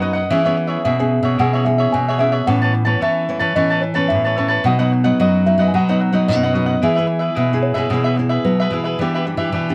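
A sunny, festive samba at 110 BPM in E major, cut from a longer piece, with a crisp, picked cavaquinho accompaniment beside an up-front, fingerpicked classical nylon-string guitar with fresh strings. A second warm nylon-string guitar, fingerpicked with audible finger squeak, carries the bass a little louder than the other parts, while a delicate, bell-like small celesta with soft felt hammers adds a sweet, dark second line until 9.0 s. The chords move from E6 through Aadd9 and B back to E, reaching Em7 at 9.0 s, all in a moderate small-room ambience.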